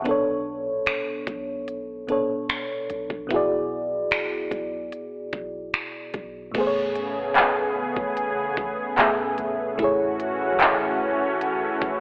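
Sensual and longing, this slow contemporary R&B fragment at 74 BPM moves through Bm7, E9/B, Amaj9 and F#m7/A in a straight 4/4 feel. A dark, vintage FM electric piano sits up front from the start, its fast-attack, decaying tones carrying a faint noise layer and a gentle warble, while a clean, sine-based 808-style bass booms deep in the background. An overdriven trap kit drives the groove with a knocking kick, crisp hats, finger snaps, handclaps and crash cymbal, sounding electronic and produced. At 6.5 seconds a thick, detuned sawtooth unison pad enters with slow attack and long release, its chorus-treated chords spreading lush and up front. The electric piano adds a brief fill at 11.8 seconds, and the whole mix is bathed in a moderate hall reverb and a worn cassette character, with drifting pitch and a narrow, telephone-like tone.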